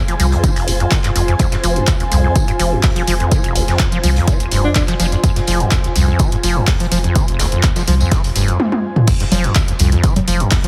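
Acid house at 125 BPM in F minor, playful and raw, where a squelchy, resonant sawtooth acid riff with overdrive and delay rides over a deep sine sub bass, an up-front punchy kick, tape-warm analog drum machine congas, claps, toms, hi-hats and crash, a gritty background garage kit of snare, hats and tambourine, and a cloudy, detuned granular pad that drops out at 8.6 s, all under a compressed radio sound, with a breathy, close-miked alto saxophone note flickering at 4.6 s and a drum fill leading into the drop at 9.1 s.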